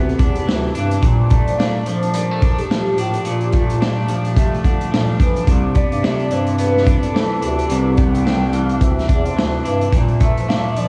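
Laid-back and nostalgic, this indie pop and bedroom pop excerpt moves at 108 BPM in 4/4 with a 16th-note swing, set in C major. A velvety, detuned synth lead carries the melody, its smooth, sustained tone wrapped in lush chorus and a diffuse ambient delay. An up-front electric guitar at the edge of break-up plays bright, twangy, picked accompaniment with chorus and vibrato, while a clear, distant bass clarinet holds the low end in a classical style. A raw garage drum kit comes in at 0.1 s with hi-hat, punchy kick and medium-tuned snare, sounding gritty and saturated with a rolled-off top. The harmony shifts between Cmaj9 and Bbmaj7, and the mix is soaked in a huge ambient reverb with a cassette-tape haze that gives it a dreamy feel.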